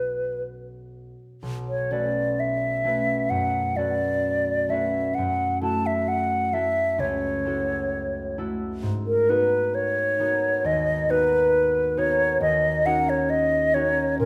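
A hollow, close-miked concert flute sings a pure, tongued melody with vibrato over a mellow, fingerpicked concert harp whose ringing accompaniment drifts through minor-seventh and minor-ninth harmonies, and this mysterious, wistful impressionist duo, cut from a longer piece, moves with free rubato in a wet recital-hall reverb.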